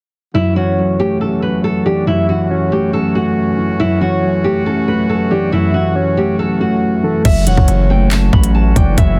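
Drill hip hop at 139 BPM in a half-time feel and F# phrygian, cold and dark, where a bright, fingerpicked nylon-string guitar melody, a muted, boxy felt-muted upright piano up front and a warm, lightly vibratoed brass ensemble holding an F#m7 chord open the excerpt, a round, detuned synth lead with chorus and delay joins at 0.6 s, and at 7.2 s a drill kit with a hard-clipped kick and crisp hats arrives, followed at 7.3 s by a heavy, saturated 808-style bass, in a dense, heavily limited small-room mix.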